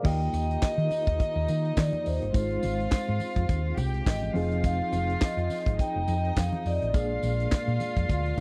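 Disco at 104 BPM in 4/4, with a light swing on the sixteenths, this short excerpt from a longer piece feels glamorous and driving as it moves through Eb, Ab6, Fm7 and Bb7. A tight funk drum kit sits up front with a high-tuned snare, a tight kick, hi-hat, handclaps and crash cymbal, joined by a round, punchy hollow-body electric bass with a dark, amped tone. Soft-mallet vibraphone carries the ringing, metallic melody with its motor off, while a studio violin section adds a smooth, gut-string second line with light vibrato. A worn, slightly out-of-tune reed electric piano supplies accompaniment through its built-in speakers with a fast tremolo, and a mellow tonewheel organ holds sustained chords in the background, showing key click, third harmonic percussion, chorus vibrato and a fast rotary speaker. Very quiet congas with a bright, thin skin and a jingly, saturated tambourine fill out the groove, all captured in a dry, close 1970s-style studio sound with small room ambience.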